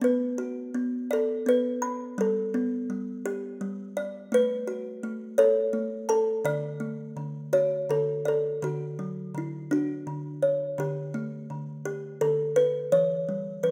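Tender and innocent, this lullaby drifts in 6/8 at a gentle 56 BPM counted in dotted quarters, with a loose, rubato feel in D major. A solo kalimba carries the whole piece, its short, thumb-plucked tones sounding woody with a hollow-box resonance and sitting up front in a light reverb. The instrument ranges from D3 up to B5, and it is tuned slightly high, with A4 at 444 Hz. The first section opens on B minor and moves through G and A before settling on D. At 8.6 seconds a second section begins on a Dmaj7, drifting through Gadd9/D toward E minor, where this short cut from a longer piece ends at 13.7 seconds.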